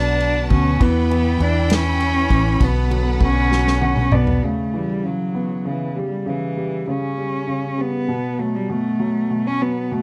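Dramatic and aching, this six-eight pop ballad moves at 66 BPM in 6/8, captured as a dry, close 1970s-style studio recording cut from a longer piece. A single bowed cello carries the melody up front, played sul tasto with a soft attack, an airy bow and intimate vibrato, and touched by a slapback echo. A polished, present baby grand piano accompanies throughout, while a lush studio string section holds sustained chords with focused vibrato and a smooth top. A dark, foam-muted fingered electric bass sits round and punchy near the front, and an acoustic drum kit played with bundle sticks adds tight kick, medium-tuned snare, ride cymbal and toms in a small room. The drums and piano each play a fill from 3.5 seconds, and at 4.4 seconds the strings, bass and drums stop, leaving cello and piano alone as the harmony moves from Bm and Em through C#m7b5 to a B7 chord with its third omitted.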